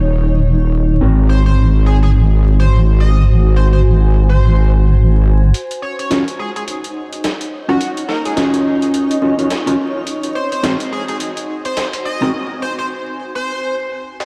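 This glitch hop excerpt struts with a swaggering, playful mood over a swung 4/4 groove. A heavy, saturated wobble bass sits up front at the start, carrying the low end beneath the guitar and pad until it stops at 5.5 seconds, when a gritty, pitched-down boom bap sampler-style kit of hi-hat, rim click and medium-tuned snare enters, its hats and snare thinned by high-pass filtering. A dark, clean electric guitar plays mellow stabs with delay, while a cloudy, evolving granular pad drifts behind it with slow attack and long release. From 1.3 seconds an edgy, tearing sync lead carries the melody, bright with vibrato, lush chorus and delay. The harmony moves between Ebm7 and Ab7, the second half builds up under a haze of vinyl crackle and light reverb, and a break arrives at 12.3 seconds as the guitar and pad drop away.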